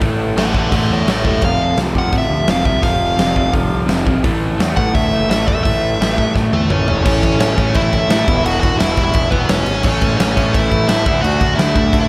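A crunchy, double-tracked rhythm guitar riff with slapback echo, a fuzzy overdriven bass sitting in the background and a punchy, up-front rock drum kit kick off this upbeat, rowdy punk rock excerpt, joined at 0.4 seconds by a dark, smooth overdriven lead guitar with slapback echo and delay that solos through a drum fill beginning at 6.4 seconds, which carries the band into a new section at 7.1 seconds, all set in a moderate hall reverb for a big arena sound.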